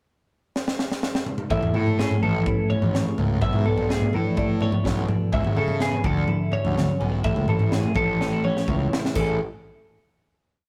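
A rough rehearsal-room recording with tube saturation and light reverb frames this short, complete math rock and midwest emo piece, wistful and intricate in a straight 4/4. A crisp fusion drum kit, up front with a high-tuned snare, punchy kick and grooving toms, opens with a fill at 0.6 seconds before two clean twelve-string electric guitars and an overdriven, fuzz-laden picked bass enter at 1.5 seconds. One bright, phaser-coloured guitar plays an ostinato accompaniment while the other adds syncopated fingerstyle arpeggios higher up over the bass's round, syncopated riff, moving through Amaj7, E7sus4/B, C#m7 and Dmaj9 before a last drum fill leads to a closing Amaj7 at 9.2 seconds.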